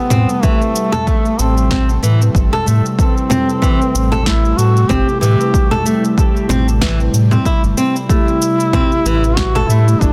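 Organic downtempo in A minor at 94 BPM with a lightly swung 16th feel, this hypnotic cut from a longer piece rests on a single Am7 chord as a mellow duduk sings a folk-style solo line full of vibrato and scooped notes, its tape echo shared with a fresh-stringed, fingerpicked flamenco guitar playing arpeggios. Beneath them, a warbling, detuned tape-like pad holds nostalgic lo-fi chords in the background with chorus, reverb and sidechain pumping, while a very quiet bronze singing bowl rings with slow, metallic beating. A round, dark analog bass with tube saturation and pumping sits up front alongside layered electronic congas, shaker and snare re-recorded in a small room, which are joined at 0.4 seconds by a punchy electronic kick, all in a dense, heavily limited modern master.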